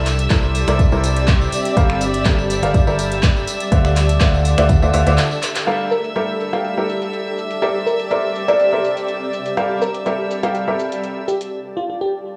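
A woody, up-front upright piano riff with echoing delay drives this energetic, bittersweet piano house excerpt at 123 BPM in G dorian, pumping alongside sustained, earthy chamber strings, a blurred granular cloud pad and a hollow, organ-like FM bass, while a punchy, tape-warm electronic kick, a house kit of finger snaps, handclaps, metallic hats and shaker, and a background tambourine hold the groove until the kick and bass drop out at 4.8 s and 5.2 s for a short break with a drum fill, before a sparkling, bell-like FM electric piano melody with chorus and delay enters at 5.9 s over the Gm9, C13 and Dsus2 chords.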